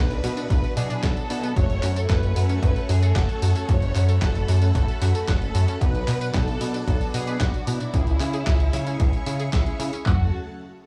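A dry, gritty hardware recording with transformer saturation, cassette-tape character and small-room ambience carries this bittersweet, danceable italo disco excerpt, where a symphonic violin section with expressive vibrato and analog delay sings the melody over lush string-machine chords, bright, detuned analog pluck arpeggios, bold wave-folded synth brass stabs and a glossy, nasal chorused synth bass up front, all driven by a punchy analog drum machine with kick, toms and handclaps alongside a sampler-style, detuned 8-bit digital drum machine adding snare, hi-hat, tambourine and handclaps.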